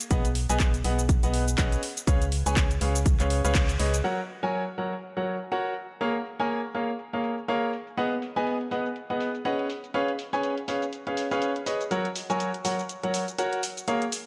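Euphoric, feel-good piano house at 122 BPM in F# major with a swung 16th feel, cut from a longer piece, built on a clear, up-front grand piano riff with sidechain pumping and dub echo, joined at first by a hollow, dark organ-like FM bass with tube saturation and a punchy electronic kick, which stops at 3.7 s while the bass ends at 4.0 s, just after a band accent at 3.5 s, as a tape-warm house kit of handclaps, hi-hat and shaker with low-pass filtered hats and snare continues under light digital ambience.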